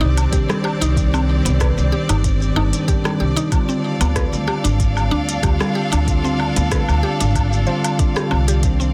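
Organic downtempo at 94 BPM with a hypnotic, slightly swung 16th feel, where a woody, up-front pizzicato upright bass with tube saturation anchors a bell-like tine electric piano with digital delay, a round FM mallet-like synth pluck spinning chorused, delayed arpeggios, and clear, vibrato-rich studio strings holding sustained chords through 12-bit sampler grit, while both the electric piano and strings pump with sidechain compression over the soft electronic kick, crisp hats, rim click, shaker and woodblock from the organic electronic kit, a barely audible impact lands at 0.7 seconds, and the harmony moves from Cmadd9 to Dm7b5 at 3.5 seconds in a dense, dry, heavily limited mix.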